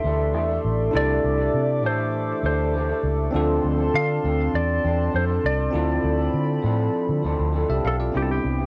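Laid-back and dreamy, this short indie pop fragment in a straight 4/4 drifts over a C69 chord, moves to Dm7 at 3.3 seconds and lands on Cmaj7 at 8.1 seconds. A clean, compressed lap steel guitar carries the slide melody, its twangy tone softened by subtle chorus and analog delay. A bell-like tine electric piano adds bright, direct accompaniment with a cassette-tape tint, while an electric guitar through a small old amp sounds slightly broken-up, picked and bathed in lush chorus with warbly pitch drift. Up high, a hollow, flute-like pad with a slow attack holds mellow sustained chords until 8.1 seconds, and a vintage foam-muted fingered bass sits up front, dark, round and punchy. The whole mix has a worn, warbling old-tape character in a moderate studio reverb.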